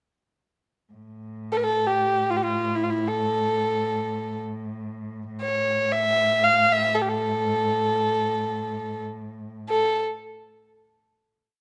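A muted cello opens this short Persian modal piece at 0.9 s, holding a low, veiled drone on A2 beneath everything that follows. Moments later a bowed kamancheh enters up front, close and intimate, unfolding an ornamented modal melody in dastgah homayun on A, tuned to A4 = 438 Hz. The music moves in free time, and its mood is passionate yet stately. The kamancheh's soft attacks, light vibrato and gliding portamento give its line a singing quality, while the con sordino cello sits far lower in the mix, dark and slightly boxy, with its own vibrato. A moderate recital hall reverb surrounds the two players, and the piece comes to rest on a final note held from 9.7 s to its close.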